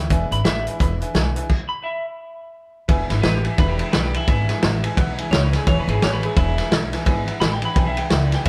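Rowdy and upbeat, this short rockabilly excerpt charges along at 172 BPM in 4/4 with a swung eighth-note feel, sitting in E mixolydian over an E7 chord. The full band plays live together in one room with moderate studio reverb. Up front, a vintage drum kit with a punchy kick, medium-tuned snare and dark cymbals drives the groove, while a growly, woody upright bass played pizzicato anchors the low end. A jumbo steel-string acoustic guitar, full-bodied with audible finger squeak, is picked in the background beside a clear, polished upright piano adding accompaniment high in its register. After a stop from 1.5 to 2.9 seconds, the twangy, slightly broken-up electric guitar, run through a small old amp with spring reverb, takes a bright solo that carries through to the cut at 8.5 seconds.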